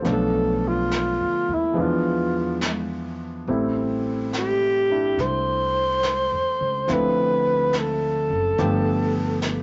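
Heard through a moderate studio reverb with rolled-off highs, this intimate, tender jazz ballad excerpt moves at a slow 70 BPM swing in 4/4 over a Bm7b5, E7b9, Am7, Dm9 and G7 progression. Up front, a breathy, mellow alto saxophone carries the melody from 0.1 seconds, using subtone, light vibrato and scooped notes. Beneath it, a clear concert grand piano with deep bass accompanies, a woody pizzicato upright bass holds the low end, and a distant, roomy brush kit brushes snare and hi-hat.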